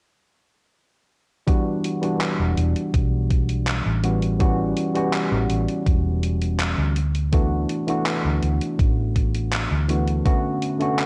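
A straight 4/4 groove opens at 1.5 seconds with a thumpy, up-front electronic kick and a gated 80s drum machine's handclaps and hi-hat, both tape-softened and re-recorded in a small room, setting up a dreamy, nostalgic vaporwave mood. A worn, slightly out-of-tune tine electric piano, lightly overdriven through a combo amp with analog chorus and delay, moves through Em9, A13, D69 and Bm7, while a dark, round hollow-body short-scale bass enters at 2.4 seconds. Light reverb, digital ambience and a cassette-tape haze frame this fragment of a longer piece.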